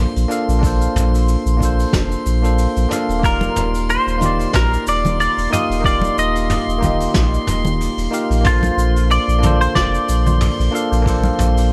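Sunset chillout with a relaxed, warm mood, moving in an easy 4/4 with a gentle swing on the sixteenths. A bell-like tine electric piano sits up front, clean and direct, with tape echo, over a round, sine-toned sub bass that holds the low end with fast attack and sustained notes. High above, a glassy texture of drifting overtones hovers in the background with chorus and built-in reverb, while a soft brush kit plays hi-hat, shaker, a fat snare and toms from a distant, roomy space, joined by a deep, layered electronic kick at 0.6 seconds. A bright, picked semi-hollow electric guitar takes the melody from 3.3 seconds, compressed and colored by analog chorus and analog delay, and congas with hard hands and tape echo enter just after. The harmony moves from Bbmaj9 to Ebmaj9 and back to Bbmaj9, and the echo-heavy mix with light reverb and studio ambience gives this short cut from a longer piece a hazy, unhurried glow.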